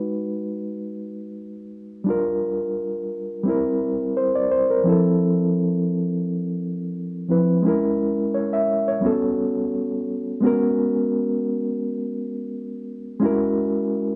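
Smooth and cinematic, this short soul excerpt at 86 BPM features a reedy, warm electric piano alone and up front, its clean tone shimmering with fast tremolo through built-in speakers in a small room with light reverb, gliding over a lightly swung 4/4 through rich chords from G#m7 to F#9 with a change of section at 10.4 seconds.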